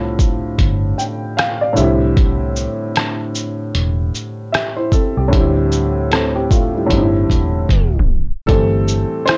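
Dry, gritty and cut from a longer piece, this melancholic, nostalgic lo-fi hip hop clip at 76 BPM with a swung 16th feel puts a worn, woody, slightly detuned upright piano up front with cassette tape colour and an early fill at 0.6 seconds, over a dark, round, foam-muted electric bass with tube saturation and a muffled, pitched-down sampler kit of thumpy kick, medium-tuned snare, rim click, hi-hat and shaker carrying vintage 12-bit character, whose fill from 6.9 seconds meets a tape stop ending at 8.5 seconds.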